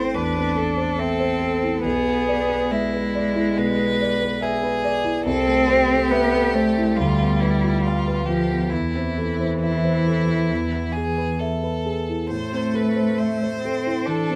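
Unfolding in a rubato 4/4 at 69 BPM, this solemn, elegiac slow romantic movement for piano trio in A minor sets a focused, distant violin melody with vibrato above a rich, up-front cello second line, played expressively with portamento and soft attacks, while a concert grand with deep bass carries the accompaniment in light reverb, in a passage cut from a longer piece.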